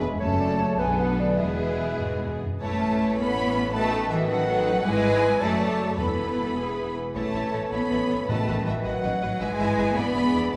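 Classical orchestral music in a dramatic, spirited mood, this fast romantic movement in A major sways in 6/8 at around 97-109 BPM with elastic rubato. A rich violin section carries the melody in the background while a warm, lush second violin section with expressive portamento, a mellow clarinet and hollow flutes weave second lines. Focused violas and a warm bassoon fill the middle, a clear, up-front cello section and distant double basses anchor the bass, and dark, very quiet horns and trombones hold sustained chords, the trombones dropping out at 2.4 seconds. Hard-mallet timpani strike crisply from 6.0 to 8.8 seconds, all set in a reverberant recital hall.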